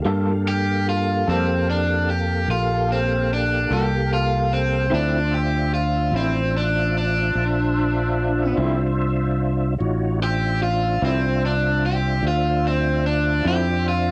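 A bright, overdriven electric guitar takes the lead up front, carrying a mournful solo through this brooding slow blues in D minor, set in 12/8 at 49 BPM and cut from a longer piece. Beneath it, a tonewheel organ holds clean sustained chords through chorus vibrato and a slow rotary speaker, a round fingered electric bass sits close and direct, and a second guitar through a small old amp adds slightly broken-up, tremolo-laden accompaniment. The harmony moves from Gm9 to Dm9 at 4.9 seconds, and the dry, lo-fi cassette home recording gives the whole a close, intimate feel.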